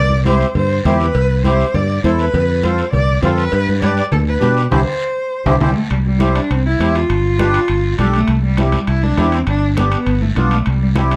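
Cumbia with a danceable, festive mood, heard as a short cut from a longer piece in a dark, warm production with a modest small-room reverb. A rich, smooth bowed cello sounds from the start, its vibrato singing through a solo that spans both sections while sitting distant yet prominent. An up-front fingered electric bass gives a round, amped foundation, and a sweet, reedy accordion with light tremolo tuning fills in airy chords alongside the cello. In the background, ringing congas played with soft hands, a raspy guiro and a metal-shelled cowbell and timbales set with a vintage, band-limited edge keep the groove moving. Around 4.7 seconds the band hits a shared accent, and a drum fill at 5.3 seconds leads into the second section, where the harmony shifts between C and G7.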